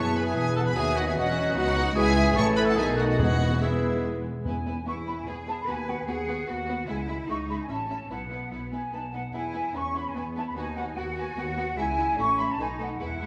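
A rich, vibrato-laden violin section carries the tune in this lively, graceful classical-period movement in quick triple time, cut from a longer piece, while pure-toned flutes and a second violin line add supporting parts throughout, and a bright clarinet, a smooth-toned oboe and a dark bassoon join them in the opening seconds. Lush violas fill out the accompaniment, an intense, clear cello section and a focused double bass anchor the bass line, and a very quiet, mellow French horn section holds sustained chords until 4.2 s. Timpani enter in the background at 3.2 s and return with a brief fill at 13.0 s, heard through a wet scoring-stage reverb.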